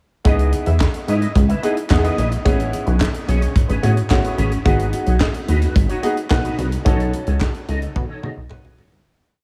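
Late-night and slick, this short early-eighties boogie funk breakdown rides a tight, up-front drum kit with a high-tuned snare layered with clap on a four-on-the-floor beat, while a fat, punchy analog bass plays a syncopated line with chromatic approach notes, a bright baby grand pushes rootless chords, a clean electric guitar with an envelope filter and ensemble chorus chops out sixteenth notes, and very quiet, crisp group handclaps mark the backbeat as the piece fades out from 6.9 seconds under a closing drum fill.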